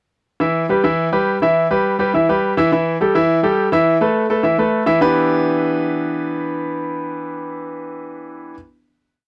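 A straight, brisk four-beat pulse carries this brief, complete Latin piece, danceable and fiery from its first note at 0.4 seconds. A concert grand piano plays alone throughout, laying out a montuno in octaves that spans a two-octave range and stands up front in the mix. The opening mambo section carries riff-like figures over a short chord cycle, then gives way at 5.0 seconds to a final chord that rings with long sustain until the piano falls silent at 8.5 seconds. The instrument sounds clear and polished, with a deep bass register and audible action noise that lend an intimate, present quality. A light reverb touches the piano, but the overall sound stays dry and close, in the manner of a 1970s studio recording.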